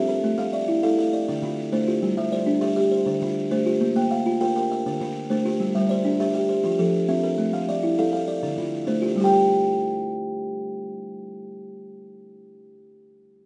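Two buzzing, woody kalimbas open together, spinning hypnotic, trance-like arpeggios in a southern African traditional mbira-style interlocking cycle at 134 BPM in a straight 12/8, one louder with a hollow, boxy resonance and the other softer on a solid board with an airy ring, both mellow and up front in moderate studio reverb as the harmony keeps circling back to D minor until both fall away at 12.4 seconds in this fragment of a longer piece.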